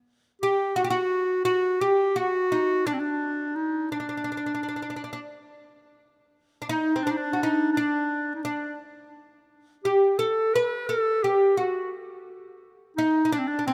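Turkish music in a 9/8 metre with a festive yet stately mood, cut from a longer piece, set in makam hicaz. An up-front oud, bright and woody with its plectrum-plucked double strings, carries the melody from 0.4 seconds while a clear, close-miked clarinet in classical style plays a second line in the same register. A moderate plate reverb gives the rough home-demo mix a lingering three-second tail.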